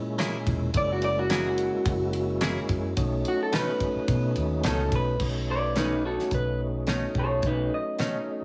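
An electric guitar through a small old amp carries the melody in this gritty, soulful straight-eighth soul blues excerpt, its picked tone slightly broken-up, lo-fi and up front from 0.8 seconds. Beneath it, an overdriven tonewheel organ supplies full, percussive accompaniment with second harmonic percussion, chorus vibrato and a slow rotary speaker. A direct-recorded clean electric guitar adds bright, twangy, compressed and scooped stabs, with a clean guitar solo marked over the first 5.2 seconds. A damped 70s drum kit sounds dry and mid-forward, with a fat snare and tight kick alongside hi-hat, ride and crash cymbals. A vintage muted fingered electric bass gives a dark, round, foam-muted low end. The harmony moves from F#9 to B9 at 3.0 seconds, and a new section begins at 5.2 seconds, all set in light reverb and small room ambience.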